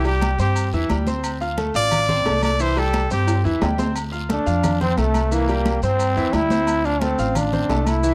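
A growling trombone takes the solo spot at 4.3 seconds, up front with a gritty, raspy edge and vibrato, pushing this short salsa cut from a longer piece into passionate, danceable territory. Before it, a clear, close-miked trumpet carries the melody with vibrato until 3.4 seconds, and a drum fill at 3.3 seconds bridges the two horns. Underneath, a bright concert grand piano supplies polished accompaniment with deep bass, while a woody pizzicato upright bass sits up front. The percussion stays in the background: damped, high-tuned congas, ringing agogo bells and timbales, grainy vintage maracas and a guiro. Harmony moves between C and Dm7, and the whole track has the dry, close sound of a 1970s-style studio.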